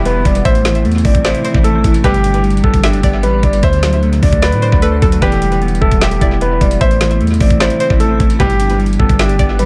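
A half-time trap beat at 151 BPM, with a knocking kick, woody snare and metallic hats carrying vintage 12-bit sampler grit up front, drives this dark, eerie hip hop piece, where a long, deep sine 808 bass sits under a deep-toned concert grand piano melody shaded by a low-pass filter and tape echo; a twangy, string-like resonator pluck traces a second line in the background, a clean, fingered electric guitar accompanies with subtle chorus and echo, and a very quiet granular pad holds blurred, evolving chords; a faint electronic downlifter sounds until 2.0 s, and very quiet, lush bowed symphonic strings add brief stabs at 2.0, 5.2 and 8.4 s over an Am, G, D, Emadd9 progression in a light-reverb, echo-heavy mix.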